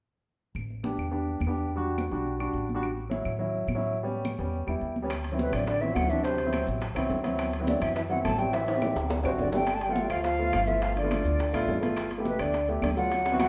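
Afro-Cuban jazz at a brisk 210 BPM, this lively, sunny excerpt opens with growly pizzicato upright bass, woody claves, damped high-tuned congas and a polished, up-front grand piano, and at 5.1 s tight bongos, grainy maracas and ringing timbales join, followed at 5.4 s by an airy, hollow concert flute carrying the melody over a dark, breathy trombone second line with scooped notes, the band playing together in a large studio with moderate reverb and a drum fill arriving at 8.5 s.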